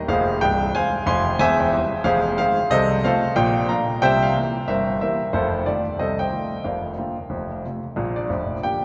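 Bathed in a long, wet cathedral reverb, this brief, playful stride-piano excerpt features a single polished, up-front grand piano with long sustain, swinging through a chord progression that spans the deep bass to the upper treble before settling home at 8.0 seconds.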